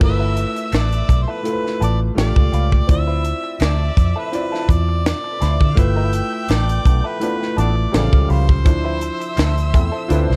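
This short excerpt of lush, 1970s-style soul opens with a harmonica carrying the melody, its tone softly vintage with light vibrato, scooped notes and tongue slaps, over a tight funk drum kit with a high-tuned snare and a round, foam-muted electric bass sitting up front. Moving at a relaxed 83 BPM in 4/4 with a gentle swing on the 16ths, the groove feels warm and romantic as the harmony moves through G13, A7b13 and Dm9. A concert grand piano fills out the accompaniment with deep bass and audible action noise, lending an intimate, natural touch. In the background, a clean, compressed semi-hollow electric guitar plays a riff through a wah, while a distant, woody violin section adds a bowed second line with soft-attack vibrato. At 6.9 seconds a clear, tight trombone section joins with jazz-style stabs, and the whole band sits in a small room ambience.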